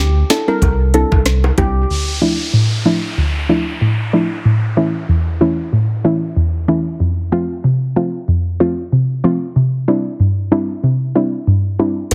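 A soft, round pluck with a dark, chorused tone carries this bouncy, sultry dancehall excerpt in D minor at 94 BPM, playing up front from 0.3 seconds almost to the end over a swung sixteenth-note feel. At the start, a deep sine-and-triangle sub bass with an added octave sits under a produced afro-pop drum kit with a knocking kick, sharp snare, smooth hi-hats, crash cymbal and rim clicks. Tight, high-tuned acoustic bongos played with soft hands add a small-room touch, and a metallic, shimmering steel pan struck with hard rubber sticks plays a short tape-echoed melody over the opening Cadd9. When the drums, bass, bongos and pan drop away, an electronic downlifter sweeps in at 1.9 seconds as the harmony moves through Dmadd9, A and F before landing back on Cadd9. The bass, drums, bongos and downlifter return at 12.1 seconds, just as the excerpt cuts off. A heavily compressed, radio-like finish with light reverb shapes the whole track.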